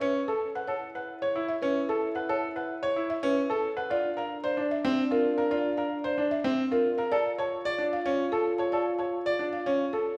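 A steady 3/4 pulse at 112 BPM drives this bright, propulsive minimalist classical excerpt, where a buzzing, woody marimba played with soft mallets carries the melody from A4 to A5 over up-front baby grand piano arpeggios with short sustain, while a mellow, distant French horn with light vibrato and a soft attack sings a second line, all moving through Aadd9, Bbadd9 at 3.9 seconds and Dm at 7.1 seconds in a wet recital-hall reverb.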